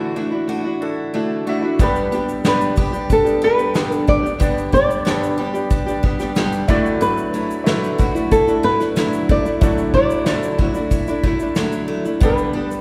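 A thumb-plucked flamenco guitar carries the melody up front in this easy-going, heartfelt acoustic pop passage, over a small, fingerpicked nylon-string guitar, a polished baby grand piano set in the background, and a bright steel-string acoustic picking arpeggios with audible finger squeak. At 1.8 seconds a soft brush kit of kick, snare and shaker joins with a dark, smooth, rolled-off sound, as the harmony moves between Dadd9 and G. A moderate concert hall reverb gives the whole a spacious, hall-like ambience.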